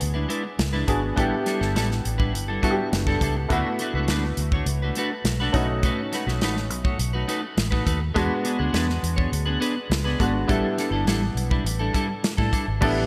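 Urban and upbeat, this polished 1980s jazz-funk pop excerpt moves at 103 BPM in a straight 4/4, with a dark, clean picked electric guitar riff up front and a bright, brilliant baby grand piano comping through chords like E7, A7sus4, D6 and B7, both treated with analog chorus, over a round, punchy foam-muted fingered bass and an airy modern studio kit of tight kick, medium-tuned snare, hi-hat and crash, all set in a lush hall reverb with a crisp digital 1980s sheen.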